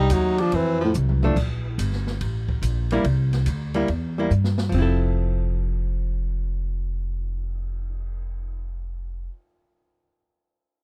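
Relaxed small-group swing and bop jazz, cut from a longer piece, opens with a breathy baritone saxophone melody touched by tape echo and a raspy, growling tenor saxophone second line that both stop within the first second, while a woody pizzicato upright bass, a natural small-room drum kit with dark cymbals, a boomy kick and brief fills, and a clean, hollow-body archtop guitar entering at 1.2 seconds share a dry, close 1970s-style studio sound.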